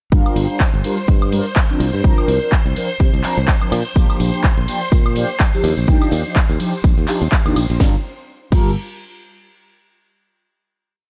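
Filtered disco house at 125 BPM in G minor, funky and nostalgic, with a swung 16th-note feel over a four-on-the-floor pulse that rides sidechain pumping through most of the parts. A punchy, overdriven electronic kick sits up front, joined by a layered house kit of cracking snare, claps, closed and open hats, shaker, ride, crash and a high woodblock, programmed into hats and a backbeat. A bright, growly fingered electric bass plays a funky syncopated line, while mellow synth brass, round and detuned with chorus, phaser and vibrato, supplies dark dotted-rhythm chords in a drop-2 voicing. Above them a swirling string machine holds a high note and sustained chords, its bright sawtooth tone roughened by phaser, ensemble chorus and vintage 12-bit grit. A band-limited tambourine enters in the background at 4.0 seconds, the chords move from Gm7 through C9sus4 and Bb6, and the drop gives way at 7.8 seconds to a final Gm7, all in a dry, close-sounding mix.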